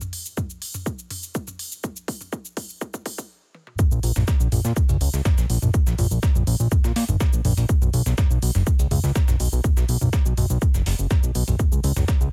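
Driving and hypnotic, this melodic techno cut from a longer piece runs at 123 BPM in a straight 4/4, set in Bb phrygian. It opens with a build-up led by a house drum kit of crisp hats, shaker and toms, all pumping against the sidechain, while a punchy, up-front electronic kick joins at 0.4 seconds and a drum fill carries the tension until a brief stop just before the drop. At 3.8 seconds the drop lands, and a moment later a fat analog bass arrives, blending sawtooth, square and sine tones into a thick, detuned, wave-folded and saturated sound with a filter sweep, fast attack and sustained, mellow notes that pump with the sidechain. Alongside it, a quieter breakbeat sampler-style kit adds gritty, pitched-up hi-hat, shaker and a medium-tuned snare, compressed and tape-warm, each shaped by high-pass and low-pass filtering. The mix is dry, with little reverb, and a high-pass filter on the whole.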